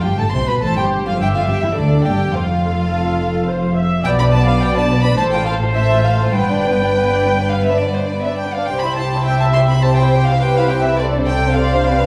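This short cut from a longer piece moves in a quick, flexible four with a rubato feel, a lively and graceful classical-period movement for string orchestra set in a recital hall and heard from further back in the room. A violin section carries the melody with vibrato and a soft, sul tasto touch that sounds intimate and close. A second violin section adds a rich second line beneath it, while the viola section enters at 0.6 seconds with a pure, floating accompaniment. Underneath, the cello section gives the bass a warm, lush body, joined at 0.1 seconds by a double bass section whose tone is rich and smooth-topped. The harmony passes from C/G through Dm, Bm7, F/A and G to C, closing on Dm7/C, all wrapped in a wet hall reverb.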